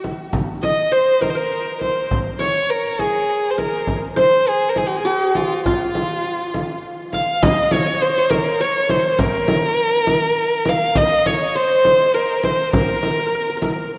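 A rich, expressive violin, played by a single bowed player, sings up front with vibrato and portamento, its line colored by analog delay, in this hypnotic, soulful excerpt of Arabic maqam ensemble music in a straight 6/8. A plectrum-plucked qanun with bright-edged triple strings traces a second line in the background, also touched by analog delay, while a deep, large frame drum struck with hard hands sits up front in a live room from the opening second. The whole ensemble is soaked in a huge, dreamy reverb, and the music shifts into a new section at 7.4 seconds.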